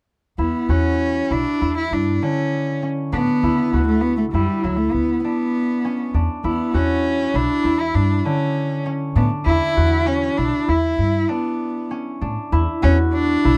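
A rich, bowed cello with smooth vibrato carries the melody up front in this restless, urgent fragment of contemporary chamber music in 5/4, set over ringing, fingerpicked concert harp arpeggios and a woody, thumpy pizzicato upright bass on gut strings, all in a dark production with light reverb.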